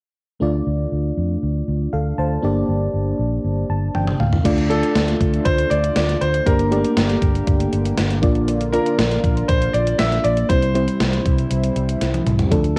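Dramatic and nostalgic, this 1980s-style pop excerpt in D minor moves at 119 BPM in a straight 4/4, opening with a dark, tremolo-laced FM electric piano and a round, foam-muted fingered electric bass, the keys carrying a cassette-tape grain and a short fill before a drum machine fill at 3.9 seconds brings in thumpy kick, crash, hi-hat, toms and a gated-reverb snare. From 4.4 seconds a shimmering, detuned pulse-width pad with chorus sits mellow in the background, and from 4.7 seconds a brilliant baby grand piano carries the melody over chords moving from D minor through G minor and B-flat to C. The excerpt has the moderate digital room sound of a home cassette recording.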